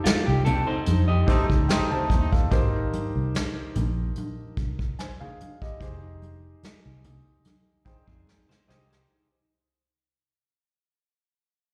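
Swung sixteenths in 4/4 carry this smooth, cinematic slice of lush 1970s-style soul. Up-front brushed drums with a punchy kick and a dark, round, foam-muted fingered bass sit under an intimate grand piano with audible action noise, while a slightly broken-up, picked guitar riff through a small old amp plays until 2.3 seconds and returns at 8.1. Brief clear horn stabs with light vibrato arrive at 1.3 seconds, and ringing, soft-handed congas sit in the background, all heard as a live gig through the venue's PA in recital-hall reverb as the passage fades out and closes on a drum fill.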